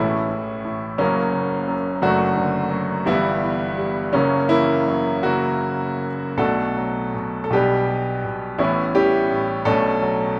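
A clear, intimate baby grand piano sits up front in a moderate reverberant space, its natural tone carrying long sustain and audible action noise as it plays a lyrical, melancholic and dark classical passage in a rubato 6/8, its range spanning F#1 in the bass to A4 across a brief span cut from a longer piece, with chords shifting from A through F# and Bm before closing on Bmadd9 at 9.7 seconds.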